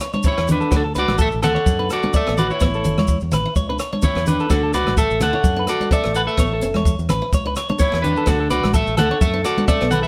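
Opening on picked archtop rhythm, clean electric arpeggios, a dry cocktail kit with tight kick, and grainy maracas, this warm, danceable highlife guitar band excerpt in D major at 127 BPM with a light sixteenth swing adds damped congas at 0.1 s, an up-front, twangy, slightly broken-up lead guitar melody at 0.3 s, and foam-muted fingered bass at 0.4 s, all played live in one room with moderate reverb over a cycle of A, D and Dadd9 chords.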